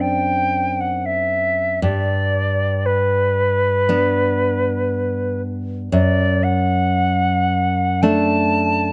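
A tender, serene romantic duo for flute and classical guitar, this short excerpt drifts in rubato at 58 BPM in G major, with a pure, silvery concert flute singing a tongued melody with vibrato over fingerpicked nylon-string guitar that sounds full-bodied and deep, with audible finger squeak, moving from D7/F# to G at 1.8 seconds and D/F# at 5.9 seconds, all captured by close, detailed microphones in light reverb.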